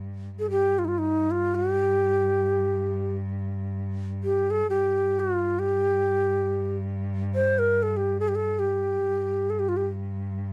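Soulful and longing, this short passage is cut from a longer piece in the Arabic maqam tradition, unfolding in free time in maqam bayati on G. A rich, bowed cello holds a low drone on G2 from the very start to the end at 10.5 seconds, its single player giving a nasal, boxy, focused tone with vibrato. Just after, at 0.4 seconds, a breathy end-blown ney carries the melody between Eb4 and C5, its warm reed-cane voice tongued and straight-toned, and it falls silent at 9.9 seconds. Close-miked and up front, the ney sits clearly above the softer cello. The dry, close sound recalls a 1970s-style studio, touched by light reverb.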